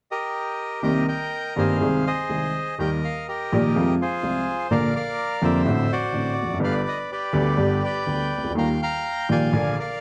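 A reedy, bright bandoneon opens this dramatic, tense tango fragment, carrying the melody up front in a free, rubato feel. At 0.8 s an upright piano joins beneath it with a woody, slightly detuned accompaniment and a long sustain, moving through a restless minor-key progression that settles on a G chord before closing on Ebadd9. A moderate large-studio reverb adds space to this passage cut from a longer piece.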